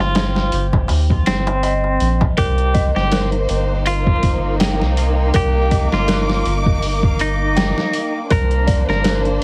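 A swung, pitched-down sampler-style drum kit with a thumpy kick and overdrive sits up front beside a round, nasal analog bass, while a crisp metal-shell darbuka struck with hard hands adds extra percussion until 2.3 seconds in this brooding, smoky trip hop fragment. A clean semi-hollow electric guitar carries the melody through tremolo and tape echo, and an eerie, inharmonic synth bell traces arpeggios in the background through chorus and digital delay. From 2.4 seconds a lush, bowed violin section holds sustained chords, all within a dry, heavily compressed radio-style sound dusted with vinyl crackle.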